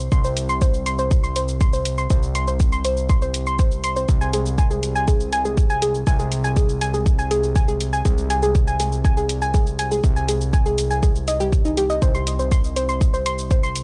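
A dry, gritty hardware recording with a cassette-tape cast frames this dark, cinematic slice of melodic techno in a steady 4/4. A punchy electronic kick sits up front with a fat, detuned sawtooth bass that pumps against it, while bright layered shakers and hi-hats ride in a small room. Soft, round arpeggios carry chorus, tape echo and sidechain pumping, running through the whole passage as the harmony moves to Ab/C at 4.1 seconds and settles on C5 at 12.0 seconds.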